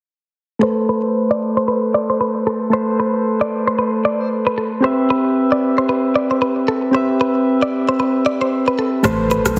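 Afrobeats with a hypnotic, smooth mood, cut from a longer piece, where soft, round synth keys with chorus and a filter sweep carry the Amadd9 and Cmaj7 chords up front while a bright, direct-recorded clean electric guitar picks a riff through spring reverb and digital delay. Near 9.0 seconds a mellow tine electric piano bass, an electronic shaker and rim click, and quiet congas and bongos join, with a very quiet impact at 9.2 seconds. The whole mix sits in a moderate plate reverb with a heavily compressed, radio-like sound.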